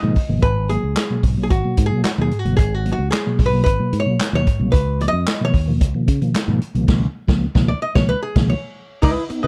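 A dark, clean hollow-body archtop guitar carries a picked, compressed jazz solo through this cool, hypnotic funk clip in straight 4/4, cut from a longer piece. Beneath it, a soft, flute-like tonewheel organ plays mellow stabs with audible key click, chorus vibrato, a fast rotary speaker and a touch of tube saturation. A fingered electric bass adds a warm, direct and amped bottom, and a swinging big-band drum kit comes in at 0.2 s with a boomy kick, a medium-tuned snare, hi-hat, crash cymbal and handclaps, its sound roomy with a rolled-off top. The harmony moves from G#m9 to C#13, and the band hits a shared accent from 6.9 to 9.0 s. Studio ambience gives the whole clip a live-room feel.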